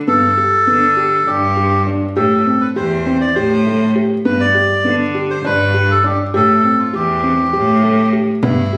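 Hypnotic and urgent, this short chamber piece from a longer contemporary instrumental work circles through an uneven 7/8 metre with a straight feel. A reedy, breathy melodica carries the melody up front, its nasal, airy tone sitting over a felt-muted upright piano that plays soft, mellow arpeggios with short sustain and audible action noise. Beneath them, a single bowed cello holds the bass line with a bright, intense sound, light vibrato and a smooth top, placed close to the listener. The harmony alternates between G and Am7, and a small, close and dry frame drum appears only near the end, at 8.4 s. The sound has the intimacy of a phone recording in a room, lifted by a light studio reverb.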